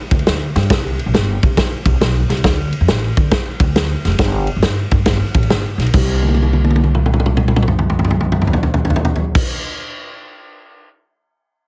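Upright bass and drum kit come in together at the very start of this joyful, uptempo 1960s-style soul clip, cut from a longer piece and driven by a swung eighth-note feel in 4/4. The plucked upright bass is woody and growly, with a dark tone from its steel strings, moving through a low register beneath the kit. The natural-sounding acoustic drums sit up front in a studio room, with a punchy kick, a medium-tuned snare, ride and crash cymbals, and toms. A drum fill begins at 6.2 seconds and runs until 9.3 seconds. The bass drops out at 9.4 seconds, leaving the drums alone until they finish at 10.9 seconds. Light reverb surrounds the parts, and heavy multiband compression gives the whole mix a squeezed, radio-like sound.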